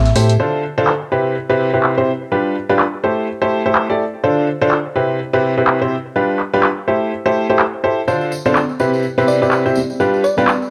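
Piano house with an energetic, soulful mood, built on a bright upright piano riff that sits up front with a woody, slightly detuned character, audible action noise and long sustain, run through cassette tape and analog delay over a Dm7, Cmaj7, G7 and Am7 progression. A punchy, tape-warm analog drum machine drives the swung groove with handclaps and filtered hi-hats, while distant tambourine and congas flicker briefly at the start and return from 8.1 seconds. A round, tine-like synth pluck with chorus and delay sits mellow in the background, heard only at the very opening and again at 9.3 seconds, and the whole cut has the character of a home cassette recording in a moderate room.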